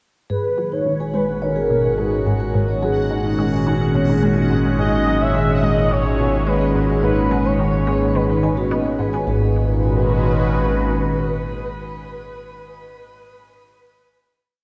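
A swirling, detuned analog pad sits up front with slowly shifting chords through phaser and chorus as this cosmic, expansive piece of ambient, sequencer-driven space music at 107 BPM in G# minor begins. A smooth portamento lead enters alongside it, singing call-phrase motifs with vibrato above a nasal, evolving drone holding G#1 from 1.3 seconds. Meanwhile a mellow soft-mallet vibraphone loops a 9-step arpeggio drifting against the bar, a juicy, squelchy blip pluck repeats an 8-step riff in the background, and a bubbling stepped-filter texture fades in on a held high note. The echo-heavy mix, with plate reverb and cassette tape character, settles on a final chord at 9.3 seconds.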